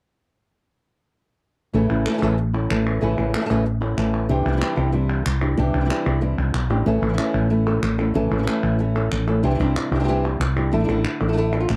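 A dry, close 1970s-style studio sound frames this mournful, intense flamenco excerpt at 187 BPM, where an up-front fingerpicked guitar melody and a second guitar's stabs with audible finger squeak enter at 1.7 s over a growly, round fretless electric bass and crisp, distant palmas hand claps, moving between A and Cadd9 before settling on Asus4.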